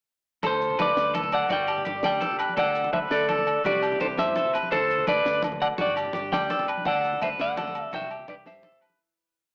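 Joyful highlife guitar band piece in D mixolydian at 112 BPM in a straight 12/8, where a clean, up-front electric guitar sings hook phrases partly doubled in thirds over a bright, twangy, slightly broken-up electric guitar ostinato with analog delay, a full-bodied steel-string acoustic picking syncopated fingerstyle in the background, a round, dark fingered bass figure, a compact cocktail kit with a high-tuned snare and punchy kick, ringing agogo bells carrying the time line and thick-skinned, damped congas, all through a lo-fi cassette and AM-radio haze that fades out from 6.9 to 9.0 seconds.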